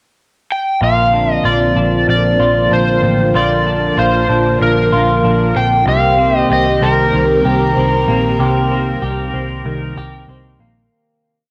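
Dream pop with an ethereal, floating mood, where an up-front overdriven slide guitar carries an arching motif through cassette tape coloring and tape echo over lush, sawtooth string-machine chords, a dark, hollow-bodied semi-hollow guitar fingerpicking chorused arpeggios, and a round, foam-muted electric bass playing steady eighth notes, all bathed in wet spring reverb on a home cassette recording that fades out from 8.4 seconds.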